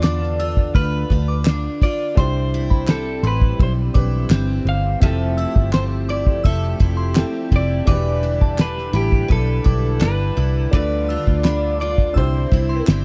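A dry, close recording in a 1970s studio style opens on a cloth-damped drum kit with a fat snare, tight kick and dark cymbals, joined from the first moment by a foam-muted, round electric bass sitting up front, group handclaps, a full-bodied steel-string acoustic guitar and a woody upright piano with audible action noise. This sunny, laid-back indie and bedroom pop fragment in C major moves at 84 BPM in a straight 4/4. Carrying the melody is a slightly broken-up, lo-fi electric guitar through a small old amp, touched with subtle chorus and tape echo. Above it, a glassy FM synth bell with crystalline, decaying notes traces a second line in the background with the same chorus and echo. The acoustic guitar carries analog chorus and a vibrato effect, and the slightly detuned piano has a cassette tape colour. At 2.2 seconds a soft-attack sawtooth pad with chorus and tremolo adds sustained chords beneath a progression that runs from Dm69 through Cmaj7, Fmaj7, Em7 and G7/D before returning to Cmaj7, all cut from a longer piece.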